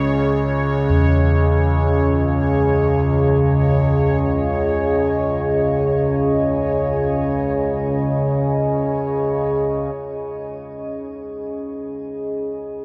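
A resonant, wave-folded drone with moving overtones opens this unsettling, desolate dark ambient excerpt in free time, joined from the start by a deep, detuned analog pad holding sustained chords through phaser and shimmer reverb, mellow bronze gamelan-type bossed gongs tracing soft arpeggios until 6.4 seconds, and a faint bubbling stepped-filter texture that lingers until 10.0 seconds, all bathed in a huge, dark reverb before a sparer closing passage from 9.9 seconds.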